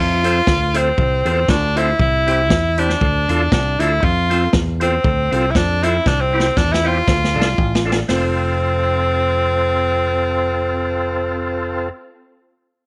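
Ska at 118 BPM in F major with a light swing, bouncy and joyful, led by a bright, forceful tenor saxophone with vibrato that sits up front yet sounds roomy and distant. Underneath, a round, dark fingered electric bass pushes forward, a clean hollow-body jazz guitar murmurs in the background, and a thick, lightly overdriven tonewheel organ jabs percussive stabs through a fast rotary speaker. A big-band drum kit with a punchy kick and medium-tuned snare swings along, plays a fill from 6.1 seconds and drops out at 8.2 seconds, leaving the other parts to carry this cut from a longer piece under a light reverb.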